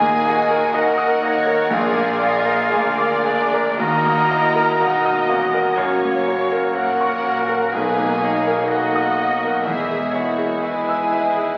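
In a free, rubato 4/4, this tragic, brooding passage from a romantic movement for piano and orchestra sets a clear, open concert grand with deep bass up front, carrying the melody across a dark progression that moves from D#m through A#7, F# and Bmaj7 to E. Behind it, a warm, smooth violin section also carries the melody, while a hollow, airy flute, a clear oboe, a lush, expressive second violin section and a distant, very quiet clarinet weave second lines. A focused viola section and a roomy bassoon fill the accompaniment, with mellow French horns holding soft-attack chords and very quiet cellos with double basses underneath. Everything sits in the reverb of a scoring stage and comes through the crackle of a very old 78 rpm record, a fragment cut from a longer piece.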